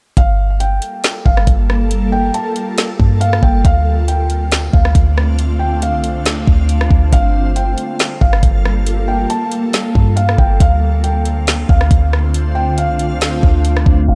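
Melancholic and spacious, this short excerpt of atmospheric cloud-rap hip hop moves at 138 BPM in a half-time 4/4 feel in G minor, where a felt-muted upright piano with audible action noise carries a soft, boxy melody through delay over an ethereal pad of detuned, chorused chords with phaser and sidechain pumping, a deep, boomy 808-style bass up front, a smooth R&B kit of knocking kick, woody snare, rim click and metallic hats, and a reversed, granular swelling texture glinting in the background, all cycling through Gm9 and Dm7 under light reverb and a low-pass filter.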